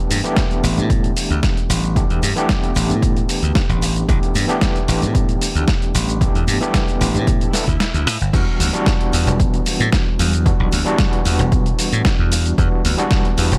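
Sleek and cosmic, this nu-disco cut from a longer piece moves in a straight 4/4 groove with a dry, close sound. An overdriven tine electric piano carries the accompaniment, barky and gritty through a combo amp, with medium tremolo, tape echo and sidechain pumping. Beneath it, a thumbed slap bass sits up front, bright, foam-muted and punchy, and it pumps with the sidechain as well. A dusty, sampler-style kit supplies crash cymbal, hi-hat, shaker and a medium-tuned, overdriven snare, while a punchy, tape-warm electronic kick anchors the beat and very quiet, distant maracas and congas sit far back in a large room. The harmony rests on A9sus4 until an electronic swell enters in the background at 7.5 seconds, the kick drops out at 7.8 seconds, and at 8.3 seconds the drop arrives on Em9.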